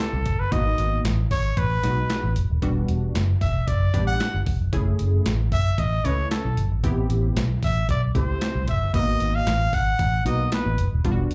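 Heard live through a club PA with the room's reverb around it, this slick, danceable early-eighties boogie funk excerpt at 114 BPM sets a clear, close-miked jazz trumpet with light vibrato and slapback echo up front over a punchy, detuned sawtooth polysynth comp with chorus and a filter pluck, a thumpy, tape-tinged 12-bit drum machine with handclaps, hi-hat and snare, and a dark, round, foam-muted fingered electric bass that enters at 0.1 s and sits prominently in the mix as the chords move through minor ninths from Am9 to G#m9, Em9 and F#m9.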